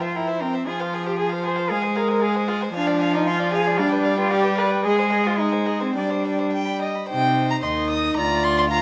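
Urgent and dramatic, this brief cut from a quick classical-period string quartet movement in C minor moves at 114 BPM in 2/4 with a rubato feel, its harmony darkening from F minor through a diminished chord onto G7 before settling on C minor near 7.1 seconds. The first violin carries the melody high in its range with an airy, nasal bow, while the second violin's rich line sits beneath it, both close and in period style on gut strings. The viola's light-vibrato accompaniment and the cello's bass sit up front, the cello reedy yet set back, all within a moderate recital hall reverb.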